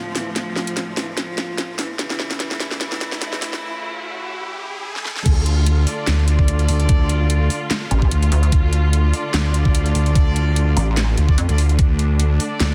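A dark, reedy solo cello with a gut-string tone carries a short bowed melody over distant, focused string-section chords that pump with sidechain compression, in this menacing cut from a longer heavy wobble dubstep track, set in D harmonic minor at 147 BPM with a half-time, lightly swung feel. A tape-warm dubstep drum kit with a huge snare, metallic hats, handclaps and crash builds through fills while a background riser climbs. The harmony moves from Dm to A/C# at 2 seconds, and the cello, touched with digital delay, falls silent at 3.6 seconds. The drop hits at 5.3 seconds, returning to Dm and bringing an up-front knocking electronic kick and a heavy, saturated wobble bass on D with chorus and overdrive. Close-miked classical brass stabs with digital delay punctuate the chaos, and from 7.9 seconds a detuned, pulsing pluck wobble bass adds a second low layer. The dense, heavily limited master keeps the bass and kick dominant, with the orchestral parts sitting well back in a digital ambience.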